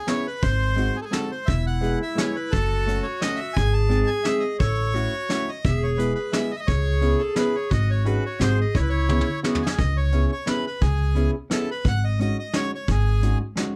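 Lightly reverberant, this fragment of a bittersweet, whirling musette waltz in C# minor spins along at 173 BPM in 3/4. A reedy, bright bandoneon carries the melody over a dark, clean hollow-body electric guitar, an up-front, woody pizzicato upright bass and a soft brush kit with a tight kick and rolled-off top. A distant, roomy clarinet with a gentle attack adds a classical-style second line from 1.5 to 9.8 seconds, where a drum fill ushers in the next section.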